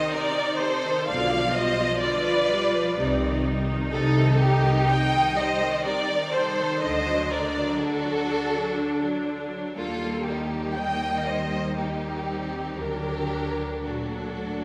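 A warm violin section carries a second line up front, its expressive vibrato sitting just above the rich, focused violin melody that sings beneath it in this solemn, elegiac excerpt from a slow romantic movement for string orchestra in 3/4, shaped with rubato. A clear viola section, also up front, supplies intense accompaniment with light vibrato. At 1.1 seconds the cellos and double basses join: the cellos dark and woody in the background with a soft attack, the double basses lush and expressive with portamento. The harmony moves from C minor through G7/B and back to C minor, then to D and E-flat before settling on D. The violins, violas and cellos are heard close, and the whole ensemble is wrapped in a long, wet church reverb.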